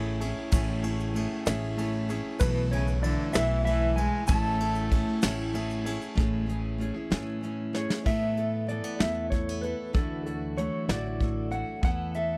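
Over a gentle 6/8 sway, this nostalgic, hopeful indie folk excerpt sets up-front brushed drums and a woody, thumpy pizzicato upright bass beside a full-bodied picked jumbo acoustic guitar in a dry, close 1970s-style studio sound, with a brilliant, long-sustaining grand piano and, in the background, a grainy tube shaker at first; a dark, clean electric guitar carries the melody through tremolo and tape echo from 2.4 seconds while a smooth bowed cello adds a brief floating second line, a fresh-stringed fingerpicked acoustic guitar enters as the piano stops at 6.2 seconds, and a drum fill at 7.7 seconds leads into the closing stretch of the building arrangement.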